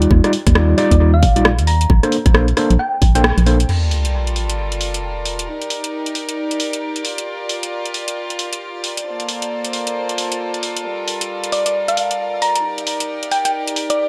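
Gritty, overdriven electric piano stabs and a hollow, organ-like FM bass open this skippy, bouncy two-step garage cut in G minor at 134 BPM, swung over a tight electronic kick and a garage kit of crash, warm hats and rim clicks drenched in dub echo, while a round, warbling thumb-piano-like pluck adds a melody from 0.8 seconds. The kick drops out with a band accent at 3.2 seconds, and at 3.7 seconds a sub drop lands as a soft-attack violin section takes over with floating, sidechain-pumped sustained chords moving through Gm9, Ebmaj7 and Bbmaj9. The pluck returns at 11.5 seconds in a lightly reverberant, echo-heavy mix.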